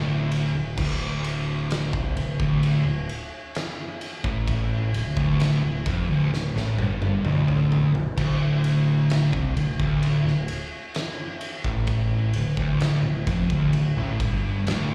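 A straight, plodding 4/4 pulse drives this ominous, sludgy stoner and doom metal excerpt, where a double-tracked fuzz guitar sits up front grinding out a low distorted riff over a growling, overdriven picked electric bass, while an oversized low-tuned drum kit with a bright stone-room sound joins at 0.3 seconds with a punchy kick, fat snare, dark cymbals and toms, playing a fill from 6.3 to 8.2 seconds, all heard as a live club gig through the venue's PA with light club reverb.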